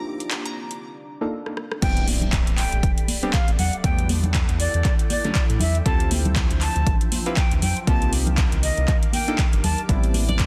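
Swung sixteenths in four drive this moody deep house excerpt, which opens with a glassy wavetable pluck, a filter-swept mellow chord stab, a silky string machine, a dark ambient pad, a smooth violin section and a swept drum kit with metallic hats, claps and rim clicks, before a brief break and a drum fill. At 1.8 seconds the drop lands with a punchy, overdriven kick, a round analog bass pumping under sidechain, a very quiet electronic impact and a reedy, airy jazz flute carrying the melody with vibrato and tape echo; from 2.1 seconds close, bright congas join in the background. Minor eleventh chords underpin the drop as the string machine's phaser and ensemble chorus sit behind, and the violins and pluck return near the end.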